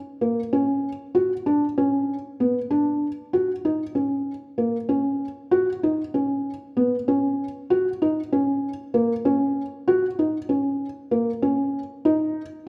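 Set in a straight 7/8 at 192 BPM counted in eighths, this contemporary instrumental fragment has a shimmering, hopeful mood. A felt-muted upright piano plays alone from 0.2 to 12.4 s, keeping to a narrow middle register between A#3 and F#4. Its thick-felted tone is dark and mellow, placed up front and intimate with audible action noise, and a moderate recital-hall reverb surrounds it.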